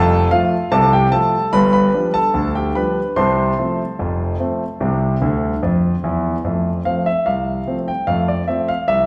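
A solo concert grand piano with an intimate, up-front sound, deep bass, long sustain and audible action noise plays a jaunty, playful ragtime piece in F major at 74 BPM in a straight 2/4, moving through F, G7, F/C and C chords, adding a fill at 5.2 seconds before a new section arrives at 6.4 seconds, all bathed in the wet reverb of a recital hall.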